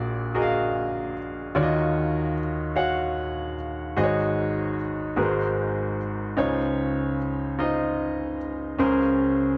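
Gospel solo piano in Db major at a slow 50 BPM in 6/8, a jubilant, uplifting fragment from a longer piece in which a clear, intimate baby grand with audible action noise sits up front across its Ab1 to Gb5 range, moving through rich chords from Bb7b13 and Ebm9 through Ab7sus4 and Ab9 to Dbmaj9 at 6.4 seconds and then Bbm9/Db, all wrapped in a moderate echo-chamber reverb within a dark, warm production.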